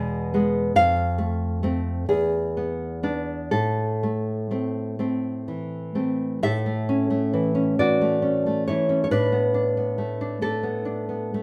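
A warm, thumb-plucked nylon-string guitar sits up front in this melancholic, wistful romantic excerpt for solo classical guitar, unfolding in a rubato 6/8 through a large studio reverb as its minor-key opening gives way to a brighter major turn at 6.4 seconds.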